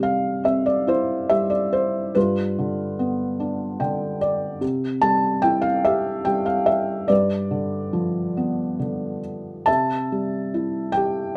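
Classical solo piano in a lyrical vein, this brief passage cut from a longer piece carries a reflective, dark mood at 72 BPM in 3/4, its beats uneven and pulled by rubato. The felt-muted upright piano plays alone throughout its 11.4 seconds, ranging from G2 to A5 in C major. Its tone is soft and mellow, sitting intimate and up front, with audible action noise lending a natural, close presence. A short fill from the piano appears between 3.4 and 4.6 seconds, and the harmony alternates between C and G7 before settling on C at 9.7 seconds. A moderate studio ambience gives the instrument a modest sense of room around it.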